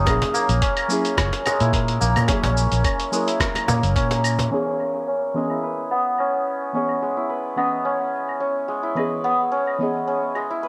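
A lightly swung 4/4 groove opens this earthy, meditative piece of organic downtempo. A gritty, tape-toned sampler-style kit with claves, crash cymbal, hi-hat, rim click and shaker sits behind low-pass filtering, while a thumpy electronic kick and a woody, band-limited cajon drop away by 4.5 seconds. A dark, round fretless electric bass with subtle chorus and sidechain pumping plays up front over the F#7 chord, then stops as the harmony moves to C#m7. The shimmering, ringing santur carries arpeggios up front throughout, low-pass filtered with digital delay, and a filter sweep colours it from 4.5 seconds onward. Beneath it, a soft, deep chord stab with fast attack and decay breathes through lush chorus, sidechain pumping and digital delay. A moderate digital room reverb gives the cut a gentle, unhurried space.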